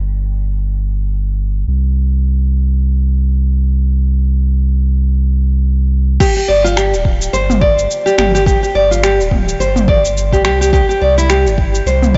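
Swung sixteenths in 4/4 give this mystical, earthy organic downtempo excerpt a loose, rolling gait, opening with a round, sine-like sub bass alone until 6.2 seconds, when a bright, fingerpicked nylon-string guitar enters with tape-echoed arpeggios over G5 and then C5 chords. A deep electronic kick and a tape-warm electronic kit of crash cymbal, finger snaps, shaker and toms, with soft clipping on the snare, join at the same moment, both re-recorded in a large room. The whole recording sounds blown-out and overdriven, with a dull, rolled-off top and light reverb, while the bass and guitar sit up front.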